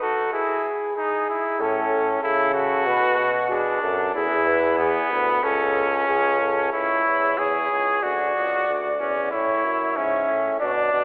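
A clear, up-front trumpet carries the second line of this stately, joyful classical canzona for brass ensemble, an imitative piece in A major at 94 BPM in a straight 4/4, cut from a longer work. Above it, a dark cornet sings the melody from a more distant, roomy position, both horns sounding together from the start with light vibrato. At 1.6 seconds a warm euphonium enters close and present in the bass, also with a gentle vibrato in a classical style. The harmony moves through E, A, Bm, E and A/C# before a second section opens at 6.7 seconds on C#m, passing to D and settling on A. The whole recording sits in a wet church reverb yet comes through a narrow telephone-like sound, giving the brass a boxed-in glow.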